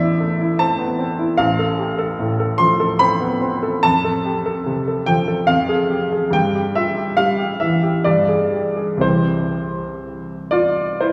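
Stormy yet bittersweet, this short romantic character piece for solo piano moves in a flexible, rubato 3/4 at roughly 57-76 BPM, tuned to A4 = 444 Hz and cut from a longer work. A clear, natural baby grand sits up front with a short sustain, ranging from A1 to C6 over a harmony that drifts from A minor through F and a darkening F minor before settling on C. A wet church reverb with a 3.5-second tail surrounds the instrument, giving the 11.1-second passage a spacious, hall-like glow.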